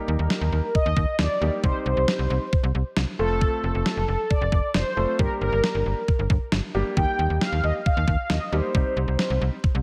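Driving and nocturnal, this synth-pop excerpt moves at 135 BPM in a straight 4/4, sitting in C dorian over a chord cycle of Eb, Cm, F, Gm and back to Eb and Cm. A mellow synth brass carries the melody from the start, its round, detuned sawtooth tone sounding dark and evolving, with a filter sweep, chorus and digital delay adding shimmer up front. Beneath it, a concert grand piano plays the accompaniment in an intimate, polished register, with audible action noise and long sustain, until it falls away at 9.5 seconds. A slap-like FM bass enters at 0.1 seconds with a snappy, metallic attack that quickly decays, sitting prominently in the low end. An 8-bit digital drum machine joins at 0.3 seconds, its detuned, thumpy kick and medium-tuned snare given a tape-tinged, sampler-style character and gated reverb. A light reverb and digital ambience wrap the whole short passage in a late-night glow.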